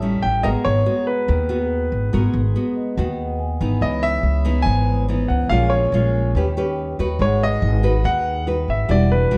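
A grand piano carries a warm, deep-toned melody from the first moment of this wistful, melancholic bossa nova at 142 BPM in G# minor, alongside a bright, fingerpicked nylon-string guitar, a woody pizzicato upright bass up front and a mellow, band-limited vibraphone played with soft mallets and slow motor vibrato in the background, which adds a fill from 2.5 s before the music moves to C# minor at 3.8 s, all set in a dark production with moderate large-studio reverb in this short cut from a longer piece.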